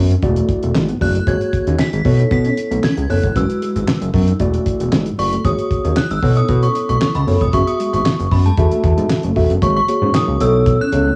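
Funky and slick, this early-eighties boogie funk cut, taken from a longer piece, rides a straight four-four groove over a cycle of suspended ninth chords. A fat, thick sawtooth analog bass sits up front with a filter-swept, sustained tone, joined by a damped seventies drum kit of kick, snare, hi-hat and handclaps that sounds dry and dark, with a fat snare, tight kick and rolled-off top softened further by cassette tape. A clean, mellow tine electric piano carries the accompaniment directly up front, bathed in plate reverb, while a very quiet, fingered electric guitar riff hovers darkly underneath. From 1.0 seconds a ringing FM synth chime takes the melody high above, its inharmonic, decaying notes trailing long through ensemble chorus, analog delay, plate reverb and tape. Near the close, at 10.1 seconds, a brief, very quiet line of round, detuned synth brass with chorus and vibrato slips in, all within the light small-room ambience of a home cassette recording.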